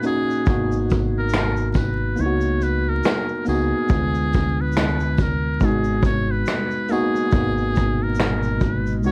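Worn, warbling cassette tape with vinyl crackle and light reverb colors this melancholic, nostalgic lo-fi hip hop excerpt at 70 BPM in G# minor, where a buzzy, breathy muted trumpet sings a jazz-style melody over a slightly out-of-tune mellow tine electric piano and up-front brushed drums with snaps, shaker and a punchy kick, a round, dark dub bass joins at 0.5 seconds, a jingly tambourine sits distant in the background, and a very quiet square-wave pad slips in at 8.1 seconds.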